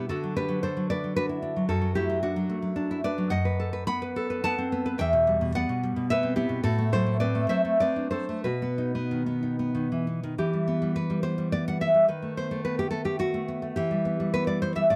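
A melancholic, wistful romantic piece for solo classical guitar, cut from a longer work, unfolds in a rubato 3/4 at 91-118 BPM and settles into E minor from 3.3 s, its full-bodied, fingerpicked nylon-string guitar sitting up front across a span from E2 to B5, captured by close, detailed microphones in a dry room that lets the finger squeaks come through.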